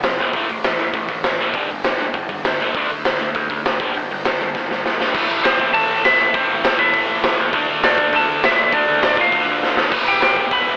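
A telephone-filtered, lightly reverberant mix frames this angry, raw punk rock excerpt in A minor at 201 BPM, where a gritty, up-front garage drum kit in a pumping stone room, a double-tracked distorted guitar riff and a growling overdriven picked bass drive through power chords before a drum fill at 4.6 seconds brings in a twangy, slightly broken-up lead guitar melody over Am, Dm and Em.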